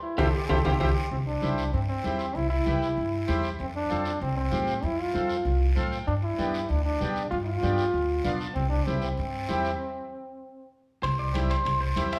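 A straight cumbia pulse in 4/4 drives this sunny, festive Latin piece at 193 BPM in C major, cut from a longer performance and heard from further back in a large, reverberant studio. The band opens with an accent and a timbales fill, while a twangy, picked electric guitar with spring reverb flashes a brief melodic figure. From 1.1 seconds the bright trombone, punchy and up front with light vibrato and a smooth top, takes a pop-style solo over chords moving from C to F, G7 and back to C. Underneath, a reedy, full accordion supplies accompaniment and slips in short fills, and the woody pizzicato upright bass sits up front. Raspy guiro, heard close, and ringing congas played with soft hands in the background keep the groove going. The band stops at 9.8 seconds, then at 11.0 seconds the scooped, compressed guitar melody and metal-shell timbales return to close the passage.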